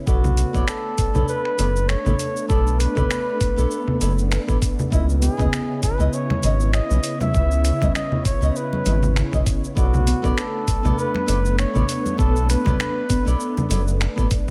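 Up front sits a round, deep analog bass, carrying a sunset chillout groove at 99 BPM with a swung sixteenth feel, while a mellow flugelhorn sings a jazz-style solo melody with scooped notes through tape echo. A silky vintage string machine holds slow-blooming chords with ensemble chorus, and a boxy, fingerpicked nylon-string guitar, filtered and echoed, fills in beneath, all moving from Bm9 to C#m9 and back. A gritty, overdriven sampler-style kit of snaps, hi-hat and shaker rides over a thumpy electronic kick, with ringing background congas joining at 5.2 seconds in this smooth, light-reverbed excerpt from a longer piece.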